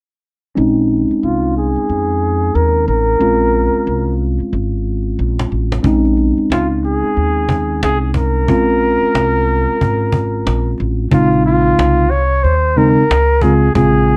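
The sound is a worn, warbling old cassette tape with a warbly pitch drift, set in a small room with a moderate reverb. It carries a nocturnal, cool jazz-hop groove at 91 BPM in 4/4, swung on the sixteenths in Bb minor, opening on a Bbm11 chord. A mellow, clean tine electric piano sits up front under a low-pass filter, joined by a dark, thumpy pizzicato upright bass with steel strings. At 1.2 seconds a bucket-muted trumpet takes the solo melody, its veiled, breathy tone carrying light vibrato and a smooth top, with a low-pass filter and slapback echo. A filter sweep runs through the opening section, a drum fill arrives, and from 5.4 seconds a close, woody cajon played with hard hands adds faint snares. The music moves into a new section at 11.1 seconds before this cut from a longer piece ends.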